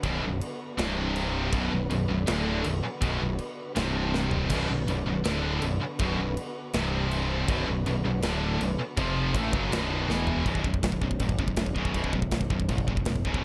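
A dark, aggressive heavy metal passage in B minor opens in a half-time feel at 161 BPM, with three scooped, high-gain guitars picking a distorted riff in the background, an up-front, round, overdriven picked bass growling beneath them, and a tight acoustic kit whose bright china and crash cymbals, medium-tuned snare and toms add fills around 4.1 and 10.1 seconds. A lush, distant bowed string section sustains chords behind the band with expressive vibrato and portamento, until it and one guitar drop out at 10.5 seconds, leaving the remaining guitars, bass and drums to push into a new section in a small, roomy ambience.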